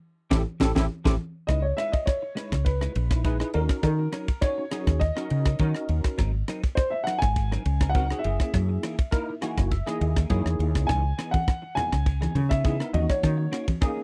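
This short excerpt of slick, driving electric jazz fusion opens on a band accent, with a drum fill and a barky, bell-like tine electric piano fill over it in the first 1.5 seconds, while congas ring out briefly beneath. From 1.5 seconds a dark, mellow baby grand piano carries the melody, its worn, boxy tone intimate enough that the action noise can be heard. Underneath, a woody fretless bass sits up front with a round, hollow-body sound, and a tight funk kit of kick, snare, rim click and ride keeps a straight groove with a high-tuned snare. The electric piano comps through an ensemble chorus and adds further fills, while a compressed, fingered clean electric guitar supplies stabs in the background through the same chorus. The congas return at 11.3 seconds, and the harmony moves through rich minor-ninth, dominant-ninth and thirteenth chords, all captured in a dry, close 1970s-style studio sound.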